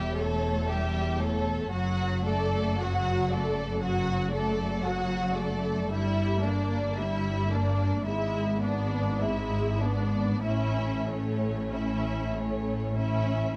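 Close, detailed microphones catch a string orchestra in a moderate scoring-stage reverb on this tender, slow romantic excerpt in D major, moving at 46-61 BPM in 4/4 with a rubato feel. A dark, soft-attacked first violin section carries the melody with vibrato and expressive portamento, over a focused second violin line, a distant viola accompaniment that also slides between notes, and a lush bass of smooth, even cellos and gently voiced double basses. All five sections enter together and play bowed across the roughly 13.6-second excerpt, with the harmony passing from A7/E through D/F#, Em7b5/G and E7/G# to rest on A at 10.4 seconds.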